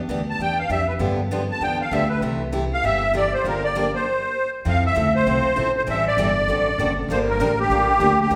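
Jazz manouche at a charming, swinging 197 BPM, cut from a longer piece, in which a reedy, shimmering musette accordion carries the melody up front over bright, picked steel-string acoustic guitar accompaniment and a woody, thumpy pizzicato upright bass on gut strings, with a stop from 4.1 to 4.7 seconds before the tune settles into F major over chords such as Fmaj7, Am7 and D7, all heard in a wet recital hall reverb with a 1.5-second decay.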